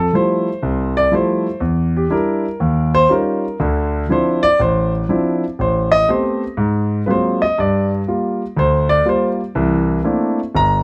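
A solo concert grand piano, heard up close and intimate with its action noise audible and a deep bass register, carries this brief, sophisticated jazz passage cut from a longer piece. The swung 4/4 feel moves through rich extended harmonies, from Fmaj9 through Eb9, Am9 and Ab13 before settling on C13 near 9.5 seconds. The natural, detailed sound sits in a dry room with little reverb, keeping the instrument's warm character front and center.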